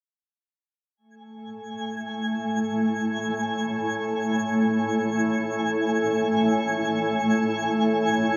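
Ambient in free time, weightless and peaceful, where a cloudy, blurred granular pad holds mellow sustained chords over a calm organ-like drone thickened by ensemble chorus, while a twinkling granular texture adds a sparkling octave-up shimmer, all three entering together at 1.5 seconds inside a dark, huge nine-second reverb.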